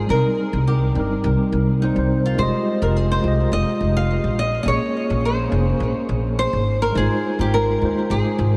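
A small, fingerpicked nylon-string guitar carries the wistful melody up front, bathed in lush chorus and delay, in this sunset chillout piece in F minor at 105 BPM. A mellow, clean tine electric piano, heard through its built-in speakers with analog delay, provides accompaniment as the harmony moves through Cm7, Fm9, Bbm9 and Ab6, while a woody, thumpy pizzicato upright bass with tube saturation anchors the low end. A huge ambient reverb soaks the dreamy, warm mix throughout this 8.6-second cut from a longer piece.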